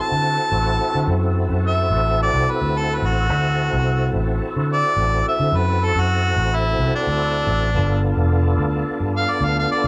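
A live band plays together in a large studio room with moderate reverb, in this laid-back, soulful straight-eighth soul blues cut from a longer piece, at 108 BPM in D mixolydian with tuning at A4 = 436 Hz. An up-front harmonica solos throughout, warm and vintage in a pop style, with light vibrato and scooped notes, over a full, thick tonewheel organ with key click, third harmonic percussion, light overdrive, chorus vibrato and a slow rotary speaker. A dark, round, punchy foam-muted fingered electric bass sits up front from 0.1 seconds, and the harmony moves from D9 to G9 at 7.7 seconds.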